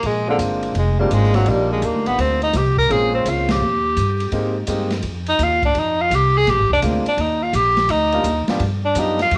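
Small-group swing and bop jazz at a cool, swinging 168 BPM in 4/4, recorded at home on cassette and cut from a longer piece. A clear tenor saxophone carries the melody up front with light vibrato and scooped notes under plate reverb, over a woody pizzicato upright bass, a boomy, dark-cymbaled drum kit with a rolled-off top, and a bright, polished grand piano with audible action noise that accompanies from 0.3 s; the sax, drums and piano all carry a cassette tape tint. The chords move from Bb7 through Ebmaj9 and Abmaj7 to a closing G7, with a band accent landing at 3.4 s.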